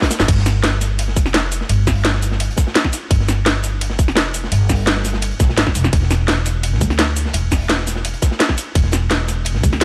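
Rolling and dreamy, this liquid drum and bass excerpt moves at 170 BPM in a straight 4/4 and opens on a drum fill, with a tight, up-front electronic kick under a layered kit of cracking snare, metallic hats, crash, ride and shaker. Beneath that sits a second, gritty breakbeat kit of saturated, high-passed hi-hat and snare with a smooth, rolled-off top. A woody, thumpy pizzicato upright bass enters at 0.2 s, ranging from E1 to D2, and the whole mix is dressed in light reverb.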